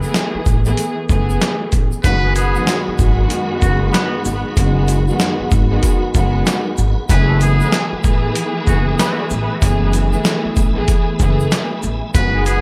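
Tough and dark, this boom-bap hip-hop excerpt moves at 95 BPM with a swung 16th feel in F# dorian, opening on a lush, bowed string section with a cassette-tape grit, a woody pizzicato upright bass, a grainy tube shaker and a gritty, pitched-down sampler drum kit with a thumpy kick and medium-tuned snare. At 2.0 seconds a buzzy, breathy trumpet with a metal mute takes the solo melody with delay, joined by a piping tonewheel organ with key click and fast rotary speaker holding sustained chords, and at 2.2 seconds a tight, punchy vintage horn section adds background stabs. The harmony shifts from F#m11 to G#m7/F# and back, all set in a dreamy mix soaked in plate reverb.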